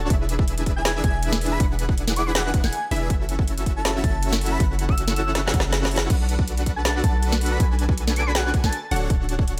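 A very quiet, wave-folded unison pluck arpeggio, a huge, thick supersaw riff and a deep, boomy 808-style bass, the latter two pumping with sidechain, open this euphoric, lush half-time future bass excerpt. They are joined at 0.1 seconds by a hard-clipped electronic kick and an up-front trap kit with woody snare and metallic hats. From 0.8 seconds an airy, dreamy lead with chorus, digital delay and portamento floats above, and a drum fill arrives at 5.4 seconds, with the kick briefly dropping out from 5.7 seconds.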